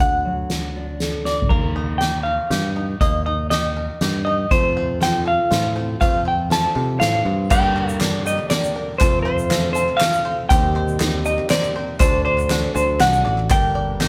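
Indie folk in a wistful, stirring 3/4 at 120 BPM, cut from a longer piece, where a dark, clean semi-hollow electric guitar with tremolo carries the melody up front over round picked bass and a soft-mallet kit with a fat snare and boomy kick, while a full-bodied fingerpicked jumbo acoustic plays only through the opening 1.5 seconds, with a drum fill at 1.3 seconds. At 1.5 seconds a twangy fingerpicked banjo adds arpeggios in the background, and from 4.5 seconds a muted upright piano with audible action noise and a shimmering, octave-doubled twelve-string acoustic join. At 7.5 seconds the arrangement builds further with a reedy, breathing pedal harmonium, a grainy egg shaker and crisp, dry group handclaps, all in a moderate room sound of a band playing live together, moving through chords such as Gm, Cm7/Eb and D.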